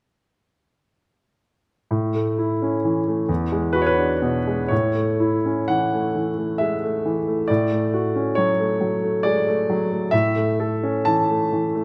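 A grand piano enters at 1.9 seconds, alone and up front, opening on an A major chord in a romantic classical character piece. The tempo hovers between 58 and 69 BPM in 3/4, and the rubato lets the phrasing breathe with passionate, warm feeling. The harmony moves from A to E9, returns to A at 4.7 seconds where a new section begins, then shifts to a Dmaj7 over A before settling back on A at 10.1 seconds. The piano spans from E2 up to A5, and its tone is clear and smooth with a slightly vintage colour. A moderate scoring-stage reverb with a 1.9-second decay surrounds the instrument, and this short passage, cut from a longer piece, ends at 11.8 seconds.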